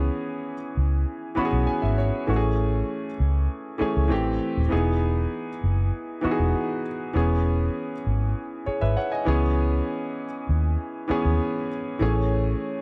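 A clear, intimate grand piano and a dark, foam-muted electric bass open this brief excerpt of lush 1970s-style soul, both sitting up front in a dry, close studio sound. The piano carries the accompaniment with long sustain and audible action noise, adding a fill between 1.1 and 2.3 seconds, while the round, punchy bass anchors the low end. The harmony drifts through smooth, romantic seventh and sixth chords, including a turn from C#m7 to Amaj7 and a darker moment on Am7 before settling on Emaj7 and E6. The same phrase is heard twice, the second pass beginning at 7.1 seconds. At 12.0 seconds a metallic, ringing vibraphone with slow motor vibrato enters softly in the background, its single note on C#5 set in a boxy small room.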